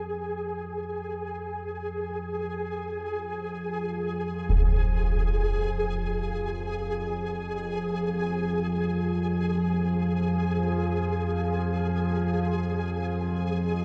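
An analog drone, built from sawtooth and pulse-wave tones with pulse-width modulation and chorus, fades in across the whole 13.8 seconds, holding a vintage, warbling hum between F2 and F3. This is ominous, unsettling dark ambient in free time, sitting on a single F minor chord with tuning at A4 = 442 Hz. Over it, a flickering granular texture of detuned triangle tones hangs on Ab4 with its own built-in reverb, its grainy surface sustained from start to finish. At 4.5 seconds a concert bass drum strikes, close and acoustic but darkened by a low-pass filter, and is gone by 4.7 seconds. The whole excerpt sits in a vast, echoing cathedral space with a reverb tail of 6.5 seconds, and lossy compression artefacts roughen the sound.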